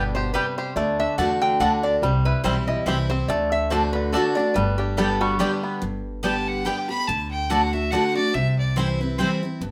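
A nasal, metallic lap resonator guitar carries the melody with fingerpicks and slide in this joyful, rustic bluegrass excerpt in G major, a swung 3/4 at 142 BPM, until 5.5 seconds, while a twangy, percussive banjo plays arpeggios until 5.8 seconds. Underneath, an up-front, full-bodied steel-string acoustic guitar picks the accompaniment with audible finger squeak, a woody mandolin adds double-string stabs, and a thumpy pizzicato upright bass holds the low end. At 6.2 seconds a single clear, biting fiddle with light vibrato steps forward for an intense bowed solo line, all set in a moderate studio reverb.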